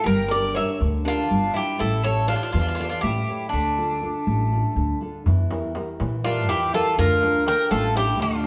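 An up-front, metallic lead bouzouki carries the melody in this tense, dramatic Greek folk excerpt in 7/8 that keeps speeding up, joined by a bright second bouzouki line, full-bodied fingerpicked nylon-string guitar, woody, thumpy pizzicato upright bass and, from 5.3 s, a crisp, deep metal-shell darbuka struck with hard hands, all heard as a band playing live together in a wet stone room.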